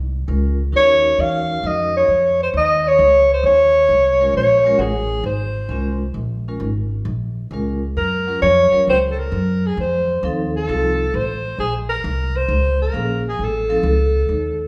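A live band plays together in a large studio, bathed in a lush 1.2-second reverb that lends the whole performance a smoky, swinging atmosphere. This small-group swing and bop piece in Bb minor is a short cut from a longer performance, built on chords that move through Bbm7, Ebm7, Gbmaj7 and F7. The breathy alto saxophone carries the melody up front from 0.8 seconds, its whispered, intimate tone marked by a soft attack and light vibrato. Beneath it, a pizzicato acoustic bass with steel strings sits close and woody, anchoring the low end from the opening moment. The vibraphone, struck with medium hard mallets, comps with a metallic, ringing sound shimmering under a fast motor vibrato, and it drops out at 13.8 seconds while the saxophone and bass carry on together to the end.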